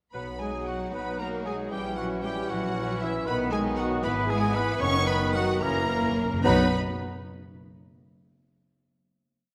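A cheerful, spirited classical-period orchestral piece in 6/8 opens with a rich, vibrato-laden violin section carrying the tune, doubled in unison by an airy flute and at the octave by cor anglais, French horns, violas and cellos, over a mellow bassoon's sustained chords, double basses on the beats and hard-mallet timpani strokes, soon joined by a clear, vintage-toned clarinet and a very quiet second violin section playing syncopated chords, with the timpani returning at 4.8 s and adding a fill that leads into the final chord at 6.4 s, the whole bathed in a wet scoring-stage reverb.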